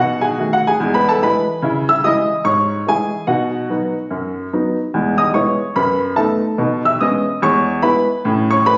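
A woody, slightly detuned upright piano sits up front with short sustain in this exuberant, swinging stride jazz fragment, playing solo across a broad range for about 8.8 seconds and captured on a phone in the room under light reverb.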